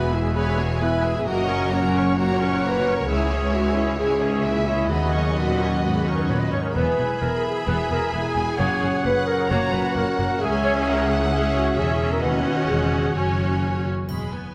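A lush, roomy orchestral sound carries this adventurous, triumphant heroic film-score excerpt, where a bowed violin section sings the melody from 0.4 seconds over a second violin line and a background clarinet, rich violas, cellos and a clear double bass section, mellow trombones and horns holding chords, ringing harp arpeggios, dark punchy trumpet stabs, and a triangle that enters only at 14.1 seconds.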